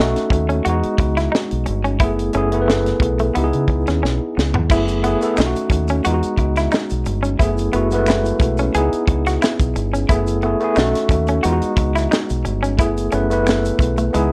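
Introspective and sultry, this 89 BPM neo-soul R&B excerpt in F# dorian sways over a lightly swung 16th-note feel, with a tight funk drum kit's high-tuned snare and tight kick up front, a dark, round fingered electric bass thickened by tube saturation, a clean tine electric piano accompanying chords like Emaj9 and F#m11, a compressed semi-hollow electric guitar carrying a second line through plate reverb, a drum fill at 4.0 seconds, and a tube shaker with finger snaps entering in the background at 4.7 seconds, all colored by the worn, warbling pitch drift of old cassette tape.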